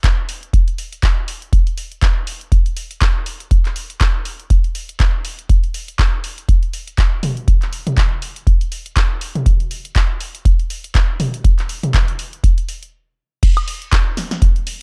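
A dark, warm production with little reverb frames this raw, hypnotic house excerpt at 121 BPM in 4/4, its sixteenth notes swung at 57%. An electronic kick drum, analog and deep, sits up front from 0.0 to 14.5 seconds, anchoring the groove. Alongside it, a punchy analog drum machine runs from 0.0 to 14.8 seconds, bringing crash cymbal, handclaps, hi-hat, snare, toms and woodblock, with a punchy snare and a tape-warm tone that carries the ambience of a large room, where the part was re-recorded. Built entirely from these two drum parts, the track keeps a stripped, percussive focus, cut from a longer piece. A stop at 12.9 seconds breaks the pattern before a drop at 13.4 seconds opens a short closing section.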